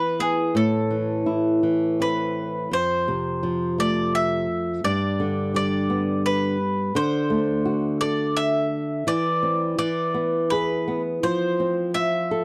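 Dry and close, this recording has the intimate feel of a 1970s studio, with only a light touch of reverb around the instruments. It is a dreamy, gentle lullaby in triple metre with a straight feel, cut from a longer piece, suited to children's music. A bowl-back mandolin carries the melody up front, its bright, picked double strings ringing in a narrow upper range. A flamenco guitar, also up front and sitting a little louder, fingerpicks the accompaniment with a warm tone, and finger squeaks can be heard on the strings. After a brief opening passage, a second section begins at 2.7 seconds and moves through chords such as F, G, Dadd9 and Cadd9/E before settling on F5 at 11.2 seconds.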